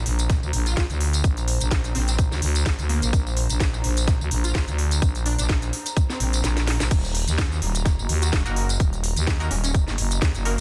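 A dense, heavily limited modern master with little reverb frames this bouncy, gritty bass house excerpt at 127 BPM in 4/4, with a light 16th-note swing. Up front sits a growling, thick FM bass, its tube saturation and sidechain pumping giving the groove its push, while a tight electronic kick lands at 0.3 seconds. A garage drum kit adds a cracking snare, crisp hats, tambourine and crash, its tape-tinged layers re-recorded in a large room, and a drum fill takes over briefly while the kick drops out around 6.4 seconds. In the background, a punchy, catchy unison lead of detuned sawtooths with a noise layer and filter sweep carries the melody through ensemble chorus and digital delay, and an airy, breathy pad with slow attack and long release pumps softly alongside it. The harmony moves from Bbadd9 to Ebm at 6.9 seconds, and a band-passed, nasal chord stab with a filter pluck and delay enters at 8.5 seconds to close out the passage.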